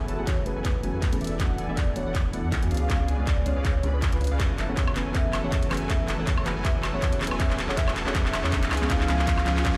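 This future bass piece at 160 BPM in F# minor has a half-time, lightly swung feel and a bittersweet, dreamy mood. The whole passage is a build-up with a running drum fill and a filter sweep on the fat, detuned sawtooth polysynth, whose bold riff carries subtle chorus, a cassette-tape tint and sidechain pumping. A velvety lead sings the melody with vibrato, chorus, delay and the same pumping, over a soft round pluck with chorus and a faint, breathy pad holding sustained chords. Underneath, a thick, saturated sub bass pumps beneath a punchy, layered electronic kick and a dubstep kit of handclaps, hi-hat and woodblock. A very quiet riser and swell enters at 7.3 seconds as the chords cycle through F#m11, E9sus4 and C#7b9. A lush hall reverb and the sound of a big system in a bare room give the mix a large, open space.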